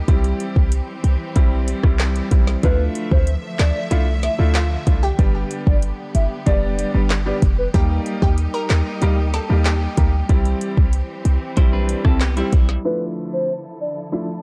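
Dark, low-passed digital ambience wraps this sultry, bouncy dancehall excerpt at 94 BPM in D dorian, where an electronic afro-pop drum kit with deep kick, woody snare and metallic hats sits up front beside a punchy, tight 808-style bass, while a worn baby grand piano and lush bowed strings pump under sidechain; a hollow, warbling clarinet-like synth lead with chorus and tape echo carries the melody from 2.6 seconds, a round analog pluck adds a second line, a twangy clean electric guitar plays arpeggios at 11.6 seconds, and a filter sweep closes the passage from 12.8 seconds.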